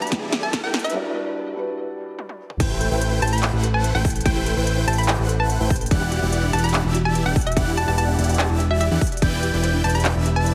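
A half-time groove at 145 BPM in 4/4 drives this dreamy, bittersweet future bass excerpt, built on a punchy, overdriven electronic kick and a big-room dance kit of crisp hats, a punchy snare, handclaps, toms and crash cymbal. It opens with a build-up over Em9: a hollow, bouncy square pluck carries the melody, huge, lush supersaw chords with phaser play the riff, and a soft, felt-muted upright piano adds intimate accompaniment, while a brief electronic riser, a filter sweep and drum fills lead into a break. At 2.6 seconds the drop lands on Am9, bringing in a fat, up-front analog bass with tube saturation, an airy lead with vibrato in the background, and a round, tine-like synth pluck resembling a thumb piano playing arpeggios. The harmony moves on through Em9 and Cmaj9/E, with sidechain pumping on the synths, piano and bass, and tape echo on the plucks, piano and lead. The whole mix sounds heavily compressed and radio-like, thinned by a high-pass filter and set in light reverb.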